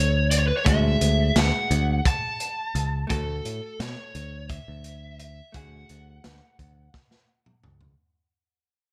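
Set in a driving, straight 7/8, this bright progressive instrumental fragment fades out across its full length. A gritty, saturated breakbeat kit with a tight kick enters at 0.3 s and closes on a fill from 6.9 s. A growly, punchy picked bass sits up front beside an overdriven lead guitar carrying the melody through digital delay, while a dark, clean hollow-body jazz guitar supplies accompaniment beneath, inside a light reverb.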